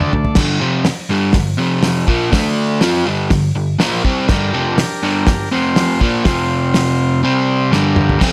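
A crunchy, bright electric guitar leads this raw, menacing garage rock excerpt, its double-tracked, picked riff sitting up front across the whole 8.3 seconds, ranging from F2 to F4. Alongside it, a cloth-damped acoustic drum kit thuds along up front at 122 BPM in a straight 4/4, with a fat snare, tight kick, dark cymbals and a rolled-off top in a small-room sound, adding fills at the start and again at 7.7 seconds. A vintage, buzzy combo organ, overdriven like the guitar, holds sustained chords briefly at the opening and returns at 4.3 seconds, sitting lower in the mix. The harmony stays in G minor, moving through G, F, Bb, D and C power chords before landing on G minor. Light reverb gives the small band a close, gritty feel, as if caught mid-song from a longer piece.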